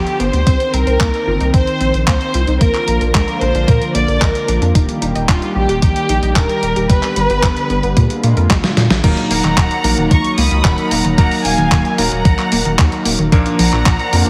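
Heavily compressed, radio-style sound in a lush hall frames this melodramatic, danceable italo disco excerpt at 112 BPM, where an up-front symphonic violin section with vibrato carries the melody through digital delay over a smooth, detuned analog pad, a deep, round analog bass with tube saturation, a thumpy electronic kick, a gritty sampler-style soul kit of snare, hi-hat, handclaps and crash, and chorused analog pluck arpeggios in the background, until a drum fill at 8.5 s leads into Eb minor at 9.0 s, where a bright, clangy electric grand piano adds stabs.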